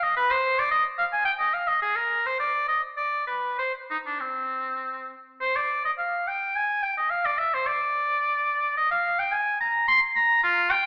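Introspective and flowing, this brief fragment of a baroque-style fantasia in triple metre features a lone oboe, clear with light vibrato, played with rubato across a span from C4 to C6, sitting up front yet roomy in the lush reverb of a recital hall, all heard through a thin, AM-radio-like sound, with a new section beginning at 5.4 seconds.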